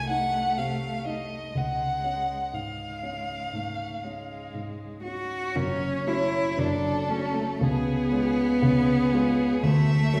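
A wet recital-hall reverb sets this elegiac piano trio a little further back in the room, though the violin, cello and piano each sit up front. A warm violin carries the melody with vibrato, a soft attack and expressive portamento, a rich, focused cello shapes a second line beneath it, and a dark, mellow baby grand gives a short-sustained accompaniment, all three playing throughout with a flexible rubato. Cut from a longer slow romantic movement, the melancholic passage opens on a Cdim7 before a new section at 5.5 s moves through F#m and C# to D.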